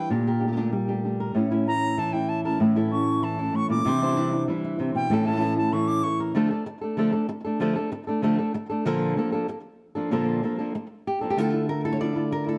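A bright, reedy silver concert flute opens this fiery, dramatic flamenco excerpt with a pure, straight-toned, tongued solo, carrying a high second line up front until 6.2 seconds. Beneath it, a fingerpicked acoustic flamenco guitar plays the melody throughout, its sound given a slapback echo and sitting forward in the mix. A second acoustic flamenco guitar adds fingerpicked stabs with audible finger squeak, dropping out after the opening and returning at 11.4 seconds. The music drives along at 192 BPM in a straight 4/4, moving through chords such as Gmadd9/Bb, A, Cadd9, Dm and Bbmaj7 before settling on Dmadd9. A moderate stone room reverb and a dark, warm production frame the performance, which is cut from a longer piece.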